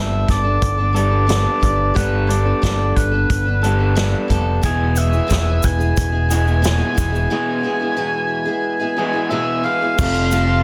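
A dense, heavily limited modern master with light studio reverb frames this wistful, reflective short stretch of folk rock and heartland rock, moving at a straight 90 BPM in 4/4 and cut from a longer piece. A distant, roomy oboe carries the melody in a classical style with light vibrato, while a picked steel-string acoustic guitar, its finger squeaks audible, fills in accompaniment beside a twangy, slightly broken-up electric guitar riff played through a small old amp for a lo-fi edge. Up front, a round, punchy picked electric bass anchors the low end, and an unplugged drum kit played with bundle sticks sits back in the room with dark cymbals, a tight kick and a rolled-off top. At 4.6 seconds, as the harmony moves from Gadd9 to E, a gritty, shouting tonewheel organ enters in the background with sustained chords through a slow rotary speaker, joined by a grainy tube shaker. The passage reaches an F chord at 10.0 seconds just before it ends.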